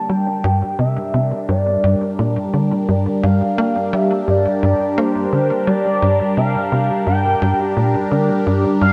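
A dark, plate-drenched mix with a long, misty tail opens this brief cut from a longer piece of ambient, sequencer-driven space music, moving at 86 BPM in 4/4 over a G minor chord in G dorian, with a cosmic, mysterious mood. A punchy sawtooth-and-square sequencer bass, ring-modulated with a plucked filter and fast decaying attacks, drives its riff from 0.1 seconds beneath a swirling, detuned analog pad whose slow-attack chords evolve through phaser and chorus. Above them, an expressive sawtooth and sine lead with wave-folded edges glides on portamento and warbling vibrato through chorus and tape echo, carrying a smooth, vintage melody.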